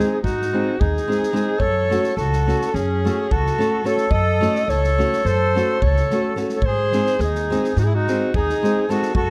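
Balkan folk in a wedding-band style, this short cut from a longer piece moves in a restless, bittersweet 9/8, shifting from G# to F#m and back to G# at 6.6 s. A classical-style alto saxophone leads up front with vibrato and a smooth top, over a reedy, airy accordion second line with slow beating and a full-bodied, fingerpicked nylon-string guitar. An acoustic big-band drum kit gives a punchy kick and medium-tuned snare in a big room, the woody, thumpy pizzicato upright bass enters at 0.2 s, and light reverb rounds out a dark, warm production.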